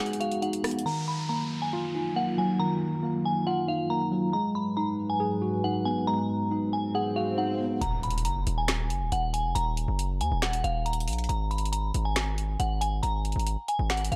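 A half-time trap groove at 138 BPM in Eb minor opens with a brief break of finger snaps, hi-hat, rim click and snare, while a glassy, warbling FM synth bell carries the melody from the very start over a worn, slightly out-of-tune tine electric piano and a detuned, moody analog pad moving through Abm7 and Ebmadd9, as a downlifter sounds. A swell leads to an impact at 7.8 seconds, where the piano and pad stop and the trap kit, with its woody snare and bright hats, returns alongside a saturated, aggressive 808-style bass. Light digital reverb frames this dark, menacing hip hop passage.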